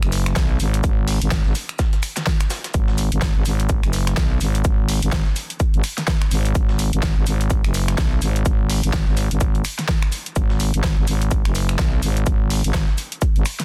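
Bass house at 126 BPM in G# minor with a 59% swing on the sixteenths, this aggressive, gritty cut from a longer piece pairs a growling, thick FM bass, tube-saturated and sidechain-pumped up front between F#1 and B1, with a punchy overdriven electronic kick entering at 0.4 seconds, a big-room dance kit of finger snaps, hi-hat and a huge overdriven snare, and a compressed, pitched-up breakbeat sampler kit of hi-hat, shaker and medium-tuned snare sitting tape-warm in the background under high-pass filtering, all in a dry, dense, heavily limited modern master.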